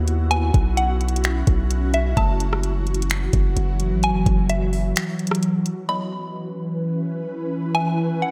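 An ethereal, detuned pad shimmering with phaser and sidechain pumping drifts over a deep sine 808 bass and a smooth R&B kit of knocking kick, metallic hats, snaps and rim clicks in this melancholic, hazy half-time cloud-rap excerpt, while a round, woody mallet-like synth pluck carries the melody through chorus and analog delay, a buzzing kalimba glints in the background, and the bass drops out at 4.9 seconds and the drums at 5.8 seconds as the reverb-soaked mix settles onto a C#m9 chord.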